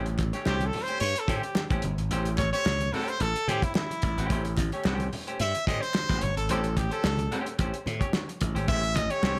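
Gritty, strutting funk at 110 BPM in A mixolydian, this fragment of a longer piece sits on an A7#9 chord as a brilliant, forceful trumpet solo enters at 0.5 seconds over growly, punchy slap bass, a muffled lo-fi soul drum kit with a tight kick, clean hollow-body guitar bathed in spring reverb, very quiet low-tuned congas and crisp group handclaps, while a tight horn section with octave doubling sounds briefly at 6.5 seconds within a band accent that runs until 8.7 seconds.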